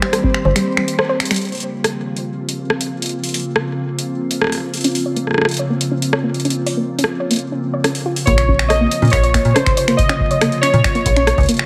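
A straight 4/4 pulse at 140 BPM drives this cerebral, eerie IDM excerpt in Bb minor, where a booming, up-front analog drum machine with metallic hats, finger snaps, rim clicks and toms plays throughout beneath a glassy, ethereal FM pad, a soft, round pluck arpeggiates through tape echo, and, after an early kick dropout, band accent and drum fill, the warbly, lo-fi synth keys, a dry, deep electronic kick drum and a mellow, metallic FM bass all return together at 8.3 seconds.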